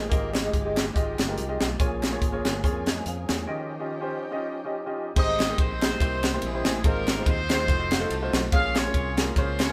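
A swung 4/4 groove at 143 BPM drives this uptempo gospel passage, cut from a longer piece and carrying an uplifting, hopeful mood. A crisp fusion drum kit sits up front with a high-tuned snare, tight kick, hi-hat, ride and crash, joined by a punchy fingered electric bass and a very quiet, saturated group handclap. A baby grand piano with a worn, long-sustaining tone accompanies throughout. Behind it, a gritty, overdriven tonewheel organ with chorus vibrato and a stopped rotary speaker holds chords alongside a lush, bowed string section. A breathy tenor saxophone with scooped notes offers a brief phrase that ends at 1.1 seconds. After a break, the organ and strings drop away and a horn section takes the melody at 5.2 seconds, up front and loose, with light vibrato and octave doubling. The piano adds a fill at 7.7 seconds as the harmony moves through Fm9, Bbm7, Eb9, Abmaj7, C7 and F7b9, with the band playing live together in a moderately reverberant room.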